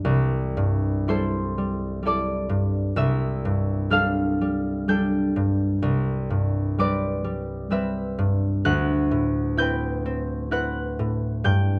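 A solo concert harp opens this dreamy, graceful classical excerpt, its fingerpicked strings ringing up front across a span from C2 to G6. The rubato playing moves in a slow 3/4 at 64 BPM in C lydian, drifting through C6, G11/C, Cmaj7 and D13 harmonies. Close, detailed microphones and light reverb keep the harp's warm, acoustic tone intimate and clear.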